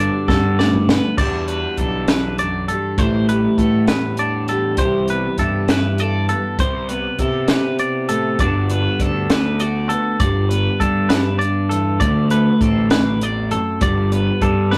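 A rough rehearsal-room sound with tube saturation and a moderate stone-room reverb frames this short cut from a longer math rock and midwest emo piece, intricate and playful in mood. It moves at 66 BPM in a straight 6/8, in G major, with a bright twelve-string electric guitar carrying the accompaniment across a span from D2 to A4. Above it, a clean, twangy electric guitar plays arpeggios between A4 and D5, while a fuzzy, overdriven picked bass holds the low end from G1 to C3. A compact cocktail drum kit sits up front with a dark, smooth character, a high-tuned snare and a punchy kick, entering at 0.3 seconds with a fill that leads into the main section at 1.2 seconds. The harmony drifts through lush extended chords, Gmaj9, Em9, Am9 and Cmaj7, then returns to Gmaj9 before a D9 resolves to Gadd9 at 13.8 seconds.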